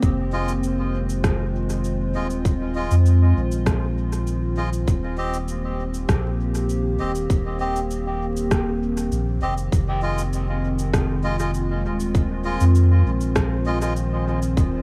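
Ambient dub at 99 BPM in F minor, meditative and hazy, where a warbling, detuned tape-like pad with chorus and 12-bit sampler grit holds sustained chords over a round, deep sub bass and a tight, overdriven electronic kick up front, while overdriven electronic cabasa and rim click drift through dub echo, reedy, breathy melodica stabs enter at 0.3 seconds, and vinyl crackle sits over light reverb as the harmony moves from Fm7 to Eb6 and back at 9.7 seconds.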